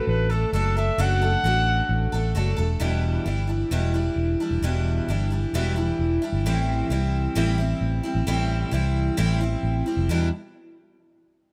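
A straight 4/4 pulse at 132 BPM carries this wistful, yearning folk excerpt in E minor, tuned slightly sharp at A4 = 443 Hz, with a round, dark fingered electric bass sitting up front from 0.1 seconds. A mellow trumpet with light vibrato sings a brief, roomy classical-style solo line that stops at 2.6 seconds, while a bright, shimmering picked twelve-string acoustic guitar supplies octave-doubled accompaniment through 10.3 seconds. The chords move from D/F# to Em7 and Am7 before settling on Em, all in a rough home demo mix with studio ambience.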